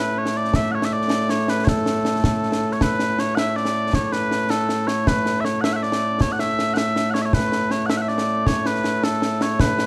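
Ceremonial and proud, this short cut from a longer piece of Scottish traditional pipe music moves in a straight 6/8 at 106 beats per minute, counted in dotted quarters, in A major. Mellow small bagpipes carry the melody from the very start, sweet and continuous with vibrato, standing up front as the solo voice across a range from A2 to F#5. A concert snare drum and concert bass drum join at 0.3 seconds, acoustic, close and dry, with dark cymbals, also placed up front. The opening passage gives way to a new section at 2.8 seconds, which runs to the end. A moderate recital hall reverb surrounds the performance, and the production leans dark and warm.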